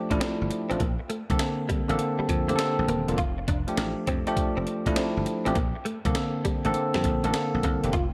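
A bell-like tine electric piano with subtle chorus opens this flirty, bouncy new jack swing R&B excerpt at 101 BPM with swung sixteenths, soon joined at 0.1 seconds by a clean, picked electric guitar riff with ensemble chorus sitting in the background, a dry, growly, punchy thumbed slap bass, and a gritty, compressed, pitched-up breakbeat kit with thumpy kick, hi-hat and medium-tuned snare, all moving between F69 and Bbmaj9 in a dreamy mix soaked in plate reverb.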